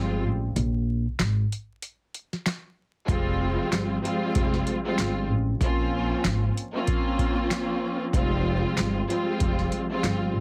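A bowed studio string section, smooth-topped with vibrato and portamento and filtered through a cassette-tape haze, opens this reflective yet tough boom-bap hip-hop cut beside a woody pizzicato upright bass, before a booming analog drum machine arrives at 0.6 seconds with its deep kick, crisp snare, handclaps and metallic hi-hats riding a swung groove, all set close and dry under a heavily compressed, radio-like sheen and vinyl crackle.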